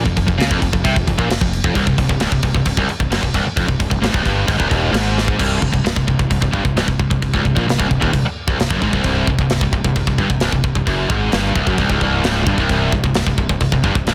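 A bright, double-tracked high-gain guitar riff and a growly, overdriven fingered bass sitting in the background open this dark, relentless heavy metal excerpt, joined at once by a tight, up-front acoustic drum kit with a rolled-off top, whose fill at 5.2 seconds leads into a new section on a C5 chord at 5.4 seconds, all set in light reverb and a dense, heavily limited modern master.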